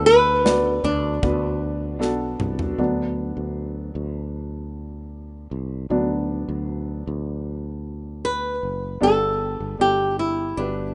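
Pop ballad cut from a longer piece, emotional and hopeful, in which a bright, up-front fingerpicked flamenco guitar carries the melody at the start and returns at 8.2 seconds, a woody upright piano with short sustain accompanies throughout and takes a solo from 2.8 to 9.0 seconds, a growly fretless electric bass holds the low end, and a tight small-room acoustic drum kit plays briefly, ending with a fill before it drops out at 2.8 seconds, inside a dry, rough home-demo mix with a muffled top and faint mains hum.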